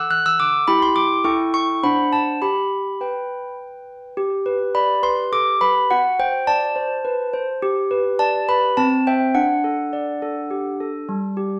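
Solo handbells ring out clear and airy, up front with hard clappers and a slapback echo, spanning G3 to F#6 in this innocent, tender classical lullaby in G major at 104 BPM in a straight 3/4, moving through chords from D and Em to G before a new section begins at 4.2 s and the excerpt settles on G5, all within a dark production lightly touched by reverb.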